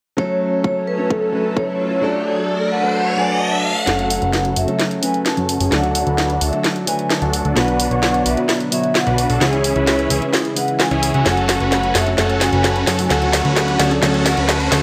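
Festival progressive house in F# minor at 130 BPM, emotional and powerful, this excerpt opens with a dark, ringing vibraphone melody with tape echo over a clear, boxy concert grand piano, a lush chorused pad and a punchy up-front kick that drops out at 2.0 s as a riser builds, then at 3.9 s a huge, euphoric supersaw lead riff under a filter sweep, a fat, saturated analog bass and a house kit with a cracking snare drive a build-up with a drum fill, all in a moderate recital hall reverb as the chords move from F#m through D, Bm and C#m, with a second riser arriving at 13.0 s.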